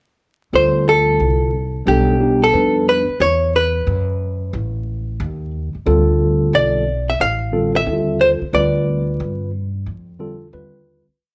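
A mellow tine electric piano and a pizzicato upright bass open together at 0.5 s, with the guitar joining a moment later in this short, nocturnal and cool hip hop piece with a swung sixteenth feel. The electric piano sits up front with a clean, direct tone, pushing quartal chord voicings decorated with grace notes over changes that move from Dm7 through B7alt and Esus2 before returning to Dm7. The upright bass walks on gut strings with a woody, thumpy sound, slipping in muted ghost notes and chromatic approach notes. The hollow-body jazz guitar carries the melody with a dark, compressed, picked tone, building on short call-phrase motifs, and a break arrives at 3.2 s. The trio sounds as if it is playing live in one room, with moderate large-studio reverb, vinyl crackle and lossy compression artefacts, and the piece fades out from 8.5 s.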